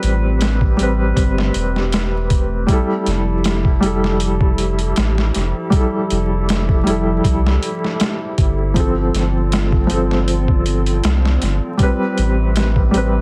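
Smoky and dark, this trip hop excerpt sways on a gentle sixteenth-note swing, with a felt-muted upright piano playing soft, intimate accompaniment through tremolo and tape echo over chords moving from Am9 to Fmaj9 and G9sus4. A deep, round dub sub bass and a gritty, pitched-down boom bap drum kit with a thumpy kick, high-tuned snare, hi-hat and overdrive sit up front. Behind them, a warbling, nostalgic tape-like pad holds sustained chords with chorus, reverb and 12-bit sampler grit, all wrapped in a dense, heavily limited master with vinyl crackle.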